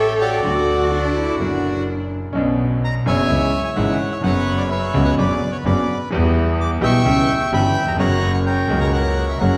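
A church or concert hall acoustic wraps this passionate, nostalgic tango excerpt in a wet recital-hall reverb, at 127 BPM in 4/4 with a rubato feel and a B harmonic minor key. An up-front, reedy bandoneon carries the melody throughout, while a dark, woody bowed cello with vibrato sits distant as a second line until 2.1 s. A clear, vintage-toned grand piano with short sustain supplies the accompaniment, and a focused, bowed double bass with vibrato holds the low end as the harmony moves from D and F#7 through Bmadd9, Em and C#dim to F#.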